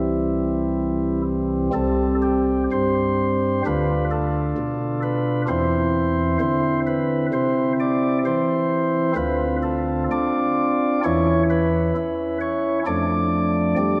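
Soft, up-front flute stops on a chamber organ with a chiff open this reverent, serene fragment of a classical chorale in C major, moving at a rubato 65 BPM in 4/4 across a range from C2 to D5, with chords drifting from C through Bdim/D and Dm7 to an unexpected Dbm7/Fb before settling on Dm/F, all bathed in a 2.3-second concert hall reverb.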